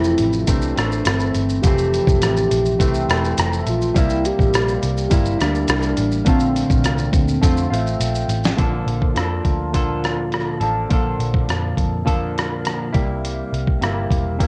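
Indie pop with a bedroom-pop haze, this laid-back cut from a longer piece moves at 104 BPM in a straight 4/4, centered on Bb lydian with chords drifting from Fmaj7 through C7 to lush Bbmaj9 and Bbmaj7 voicings. A woody, clarinet-like synth lead carries the melody in a soft, mellow tone, colored by phaser, analog chorus and analog delay, and it drops out at 8.0 seconds. Up front, a clean semi-hollow electric guitar supplies the accompaniment, its tone bathed in lush chorus and a warbly pitch drift with cassette-tape grain. Beneath it, a dark, round, muted picked bass adds punch, while a gritty, compressed sampler-style kit with a thumpy kick, fat snare, rim click, hi-hat and shaker sits prominently in the mix, also carrying a tape character. A drum fill leads into a new section at 8.6 seconds, and the whole home-cassette recording carries a light reverb that deepens its dusty, hazy mood.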